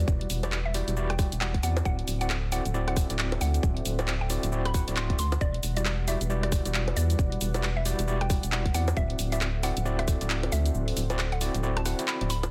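A moody, skippy two-step garage excerpt opens with a rubbery, hollow square bass sitting up front, a barky, overdriven tine electric piano stabbing through fast tremolo and tape echo, a woody, round mallet-like synth pluck carrying the melody in the background, and a smooth, detuned analog pad holding sustained chords under chorus and sidechain pumping. At 0.1 seconds the drums arrive: a tight, up-front electronic kick alongside a layered garage kit of bongos, cabasa, handclaps, hi-hat and rim click, all with a swung sixteenth-note feel and studio ambience. The harmony moves between Em9 and D9, giving the groove a dusky, unresolved colour. The warbling, vintage FM pluck adds a soft noise layer and chorus, while the piano's gritty combo-amp bite cuts above the mellow pad. The kick drops out at 10.2 seconds, leaving the bouncy bass and kit to carry the final moments of this dense, heavily limited modern mix.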